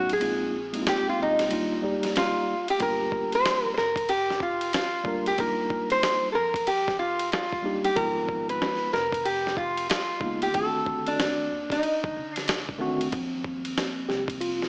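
A swung 93 BPM groove in 4/4 and Eb major carries this cool, warm jazz-hop excerpt, where an up-front, metallic, nasal lap resonator guitar plays a slide melody with fingerpicks until 12.6 s over mellow tine electric piano chords, a woody, growly pizzicato upright bass sitting in the background, and a gritty, compressed sampler-style drum kit with a thumpy kick that stays muted until 2.8 s, all bathed in echo chamber reverb and the warbly pitch drift of worn cassette tape through a small speaker, before the electric piano takes a solo from 13.1 s.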